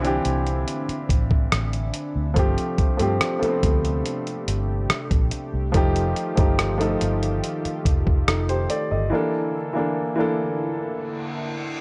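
A slow, straight 4/4 groove comes from a dusty, sampler-style drum kit whose hi-hat, rim click and thumpy kick carry 12-bit grit and a compressed, tape-warm thump, sitting up front. This contemporary R&B fragment has a longing, late-night mood, built over a Dm9 to G9sus4 to F9 progression that settles on Bbmaj7#11/D. A dark, round, foam-muted electric bass anchors the low end, while a warm grand piano plays accompaniment close to the listener, and a smooth, detuned sawtooth pad with chorus holds soft-edged chords in the background. The drums drop out at 8.9 seconds and the bass at 9.1, opening a break where only piano and pad ring on. An electronic reverse cymbal enters at 11.0 seconds, leading into what follows in this dry, gritty recording.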